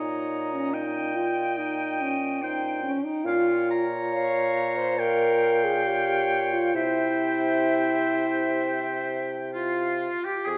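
In a rubato 4/4 at 64-73 BPM, this solemn, yearning excerpt from a slow romantic wind-quintet movement moves through Eb7/Bb, Gm7b5/Bb and C over its 10.6 seconds. An airy, softly attacked silver flute carries the melody with vibrato, while a clear, up-front oboe sings a second line. The distant, roomy clarinet and the mellow, prominent French horn fill the accompaniment above a present bassoon bass, all bathed in a wet recital-hall reverb.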